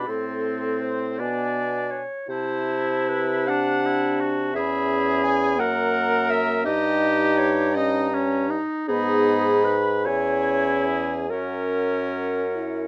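Tender and lyrical, this slow romantic movement for wind quintet moves in a rubato 6/8 at 47-58 BPM in dotted quarters, tuned to A4 = 438 Hz, with all five players sounding together from 0.0 to 12.9 seconds. An airy, straight-toned concert flute carries the melody high above a warm oboe second line with vibrato, while a distant, roomy clarinet and a French horn with light vibrato fill in the accompaniment and a mellow bassoon holds the bass up front. Close, detailed microphones and light reverb frame harmony that drifts from A minor through diminished and minor colours to F-sharp.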